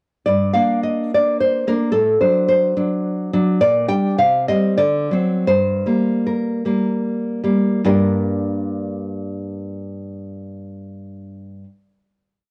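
Dulled by cassette tape and a home recording's muffled top, with light studio reverb, this short, passionate and intimate romantic piece for solo nylon-string guitar in G minor unfolds in a rubato 3/4 between 70 and 113 BPM, its up-front, warm, fingerpicked classical tone carrying a single-line melody and syncopated chords that slow from 2.8 to 7.8 seconds before settling on a final G minor chord held until 11.7 seconds.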